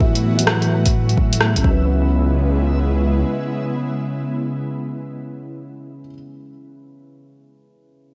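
Nocturnal and wistful, this short future garage fragment, cut from a longer piece, moves with a swung 16th-note feel in 4/4 over an Esus2 chord that turns to C#m7 at 1.6 seconds. An electronic kick, deep and tape-warm, sits up front alongside a deep house kit of hi-hat and rim click treated with gated reverb, both sounding re-recorded in a small room, though the kit only plays from 0.2 to 1.6 seconds. A menacing, saturated bass of detuned sawtooth and sine layers carries a filter swell and sidechain pumping until 3.2 seconds, while an ethereal, airy pad with ensemble chorus and its own reverb holds sustained chords with a slow attack. In the background, a dark, woody upright piano with audible action noise and a boxy, intimate tone plays accompaniment under a filter sweep, low-pass filtering, digital delay and sidechain pumping, and it outlasts every other part. A faint reversed, granular texture adds a bright, dreamy shimmer early on, and the whole mix sits in a lush hall reverb with a glossy 1980s-style digital sheen.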